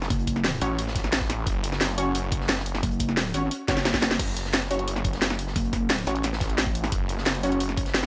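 Aggressive and dark, this excerpt of technical drum and bass drives at 176 BPM in straight 4/4, sitting on an F#5 chord in F# minor. Up front, a snarling saw bass growls low with detuned unison layers, a resonant moving notch and tube-saturated distortion, joined by a heavy pluck wobble bass whose pulsing sine tone is thickened with chorus and returns from 2.8 to 6.1 seconds. The main drum kit punches through with a cracking snare, bright hats and crash cymbals, underpinned by a knocking, layered electronic kick. Behind them, a gritty acoustic breakbeat kit adds a saturated, medium-tuned snare and hats with a rolled-off top, and a drum fill marks 3.7 seconds before the drop repeats. Over the top, a bold, punchy orchestra-hit-like synth stab with a noise layer, filter sweep and delay cuts in with short, detuned sawtooth blasts, all sitting in light reverb.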